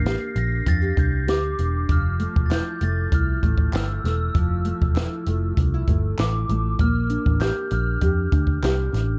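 Nostalgic and laid-back, this short indie and bedroom pop excerpt sets a mellow, bell-like glockenspiel melody with analog chorus and tape echo over fingerpicked nylon-string guitar bathed in chorus and warbly pitch drift, a round, foam-muted vintage electric bass and a dry, up-front cocktail drum kit with punchy kick and high-tuned snare, while distant, crisp group handclaps join from 2.5 to 8.8 seconds as the chords move from Bb69 to Fmaj9 and Bb6.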